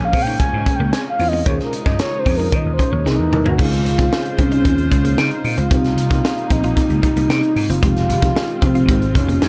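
A nocturnal, urban mood runs through this polished 1980s jazz-funk pop excerpt, set in a straight 4/4 groove and cut from a longer piece. A mellow, horn-like synth lead carries the melody with a round, sawtooth tone, soft attack and vibrato, colored by chorus and phaser, and it plays a gentle solo over the opening 3.6 seconds. Up front, a crisp fusion drum kit with bright cymbals, a high-tuned snare and a tight kick matches the growly, punchy slap bass in level. Further back sit a dreamy FM electric piano layered with a soft pad, treated with tremolo and lush chorus, a picked, compressed clean electric guitar riff through analog chorus, and a studio string section bowing smooth sul tasto chords. A drum fill at 3.1 seconds leads into the second section, where the harmony moves from Dbmaj7 through Cm7 to Fm7, all within a dark production with light reverb and a small room ambience.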